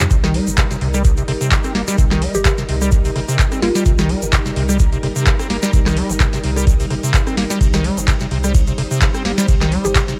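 Acid house with a trippy, hypnotic pull, this short cut from a longer piece sits on a single C minor chord over a swung 4/4 pulse at 128 BPM. A deep, analog electronic kick drum sits up front, joined by a booming analog drum machine with a crisp snare, metallic hats, handclaps, ride cymbal and rim click, both re-recorded in a small room and given a cassette tape grain, while a grainy, close egg shaker adds bright detail. The squelchy, resonant square-wave acid bass carries the riff with a hollow, plucky bite, colored by analog chorus and sidechain pumping, and a round sine sub bass with the same pumping fills out the bottom. Above them a lush, vintage string machine holds sustained sawtooth chords with slow attack, ensemble chorus and a breathing pump. A woody, mallet-like FM pluck drifts in with a short melodic phrase from 2.3 to 4.3 seconds and returns briefly at 9.8 seconds, soaked in lush chorus and tape echo. 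The whole mix has the hazy, homemade character of a cassette recording set in digital ambience.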